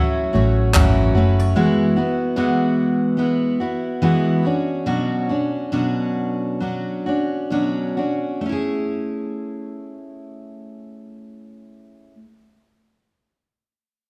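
Acoustic pop in a heartfelt, sunny mood, this excerpt centers on an up-front, full-bodied jumbo steel-string acoustic guitar with audible finger squeak that plays throughout. It is joined at the start by a bright, woody mandolin in the background and a dark, round, foam-muted vintage electric bass that stops at 1.5 seconds. Moments later comes a brief touch of jazz brush drum kit with a boomy kick and handclaps. Everything is carried by the reverb of a recital hall as the tempo slows and the chords settle from F#m7 onto Amaj7.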